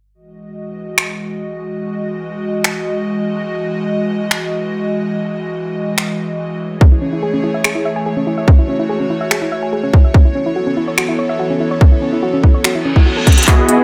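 Light reverb, digital ambience and a faint mains hum frame this playful, euphoric half-time future bass excerpt, which opens on a breathy, warbling vintage pad with chorus and sidechain pumping under a filter sweep, soon joined by a trap kit of crisp hats, finger snaps and handclaps. At 6.8 seconds a hard-clipped electronic kick arrives up front alongside a soft, round pluck playing arpeggios through chorus and delay, as the harmony moves from Emaj9 to Amaj7 and B9sus4. A reverse cymbal leads into a drum fill, and at 13.5 seconds, as a riser sounds, huge, detuned supersaw chords burst in, low-pass filtered and pumping.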